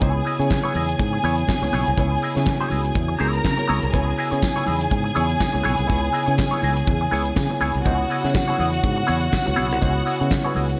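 A clear, lush studio string section carries the second line with a focused, vibrato-rich bowed sound and a touch of tape echo, sitting up front in this driving, danceable disco excerpt at 122 BPM in 4/4 with a light 16th-note swing. Underneath, a growly fingered electric bass, bright and direct, anchors a single C#m7 harmony in C# dorian throughout. A mellow tine electric piano heard through its built-in speakers and a clean, compressed semi-hollow electric guitar with wah fill out the accompaniment. A small-room soul drum kit with a tight kick, medium-tuned snare, hi-hat and handclaps is treated with gated reverb, while very quiet, damped congas with a thick skin add a high-tuned percussive layer. A jingly tambourine enters in the background at 4.4 seconds, and the whole mix has light reverb, studio ambience and a rolled-off top end.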